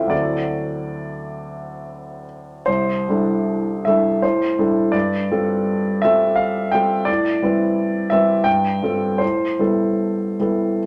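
A clear, intimate grand piano sits up front with long sustain and audible action noise in this dreamy, serene impressionist classical solo, cut from a longer piece, drifting in a rubato 3/4 at 69-88 BPM, tuned to A4 = 443 Hz, through extended harmonies such as D9, C69, Am11 and G9sus4 before settling on Am9, all bathed in a wet studio reverb.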